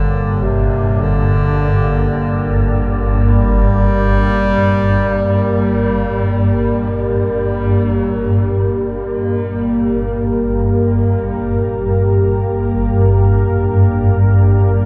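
Cavernous and unsettling, this dark ambient drone in G minor drifts in free time, cut from a longer piece and steeped in a huge, dark reverb. A swarming, detuned drone warbles low beneath a deep, moody pad of sustained chords with chorus, while a faint quartz singing bowl rings out pure, meditative arpeggios with slow beating. A distant, roomy bass clarinet carries a classical-style solo melody through diffuse ambient delay before falling silent at 6.7 seconds.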